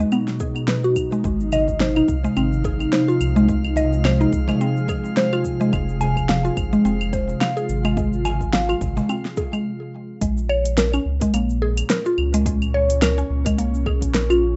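Meditative and mystical, this organic downtempo excerpt sets a woody, round, dark mallet-like synth pluck playing chorused, phased and delayed arpeggios up front over an ethereal, airy pad with sidechain pumping, a round sine sub bass, a deep house kit of fat snare, metallic hi-hat, cabasa and claves, and a deep, tape-warm electronic kick, while a faint glassy texture of drifting overtones and a very quiet acoustic cajon join around 1.6 seconds and drop out at a brief stop near 9.7 seconds, all within a rough home-demo mix with a short studio reverb.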